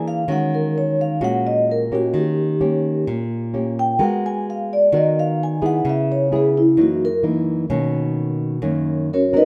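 A mellow, ringing vibraphone played with soft mallets, its fast motor vibrato set up front in a boxy small room, carries the melody as a solo across this short, romantic and relaxed bossa nova cut at 129 BPM in straight 4/4, while a thumb-plucked classical nylon-string guitar, also up front with audible finger squeak, accompanies through chords such as D#m7, G#m9 and Bmaj9 under light reverb, tuned to A4 = 438 Hz.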